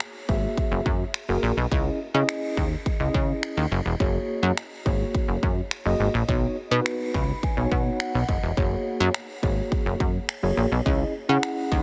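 Confident and driving, this dance-pop excerpt moves in a straight 4/4 groove, with a house drum kit of finger snaps and a punchy, up-front kick starting things off. A plucky analog bass with a fast-attack filter pluck and a sawtooth edge joins at 0.3 seconds alongside a mellow, clean tine electric piano, both pumping from sidechain compression as the chords circle through F#add9, C#madd9 and Badd9. The electric piano steps forward with a fill from 6.9 to 8.6 seconds, and light reverb gives the mix a touch of space.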